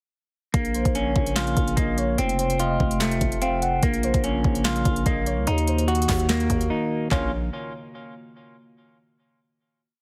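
An overdriven trap drum kit, with a knocking kick, sharp snare layered with handclaps, toms and crisp sixteenth-note hi-hats with fast rolls, drives this dark, menacing half-time trap hip hop piece at 146 BPM in Bb harmonic minor from 0.5 s, entering together with a clean semi-hollow electric guitar looping arpeggios through delay and a growling, buzzy 808-style bass whose long sliding notes follow the kick, while a deep, detuned analog pad with chorus and a velvety, vibrato-tinged synth lead playing a sparse counter-melody sit in the background, a brief break at 6.7 s giving way to a final Bbm chord ringing to 8.8 s, within a heavily compressed, radio-like sound.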